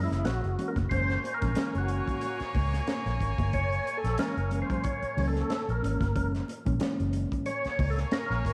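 A lightly overdriven, percussive tonewheel organ leads this strutting, energetic funk excerpt, carrying the melody up front through chorus vibrato and a slow rotary speaker for the full 8.5 seconds. Set at 92 BPM in 4/4 with a swung sixteenth-note feel, the piece sits in F# mixolydian over a single F#9 chord. A round, foam-muted vintage fingered electric bass anchors the low end prominently, while a crunchy breakbeat kit enters at 0.1 seconds with a punchy kick, high-tuned snare and hi-hat, its saturated, gritty sound dark and rolled off at the top. A clear, tight horn section with light vibrato plays a second line alongside the organ, and a reedy electric piano adds stabs through its built-in speakers with a fast tremolo until 7.5 seconds. Very quiet, ringing high-tuned congas played with hard hands sit close in the mix, and a moderate echo chamber reverb gives the whole a roomy glow.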